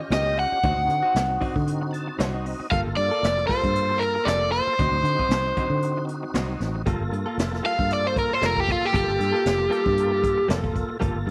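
A straight-eighth soul blues groove at 116 BPM, lightly swung on the sixteenths, is carried by a brush-played drum kit with a boomy kick and medium-tuned snare and a round, foam-muted fingered bass, setting a mournful, brooding mood over Eb7, D7b9 and Gm9 chords. A full tonewheel organ through a slow rotary speaker with gentle overdrive and chorus vibrato provides the accompaniment, adding a fill at 1.7 seconds, while a clean, direct-recorded electric guitar with tape echo places compressed stabs in the background. Up front, a warm, picked overdriven electric guitar carries the melody and moves into a solo at 6.9 seconds, all set in a small room with light reverb in this excerpt from a longer piece.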